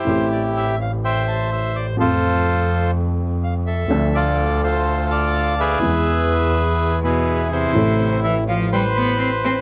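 Heard through the soft haze of cassette tape in a small room, this melancholic, dramatic tango fragment moves with a rubato feel as a reedy, close-miked bandoneon carries the melody up front over a natural-sounding baby grand piano and an earthy, bowed double bass with a nasal, boxy edge. The harmony passes from Am7 through F, Dm and E before settling on Amadd9. At 7.0 s a distant, biting cello joins with an intense vibrato, adding a bright second line beneath the bandoneon.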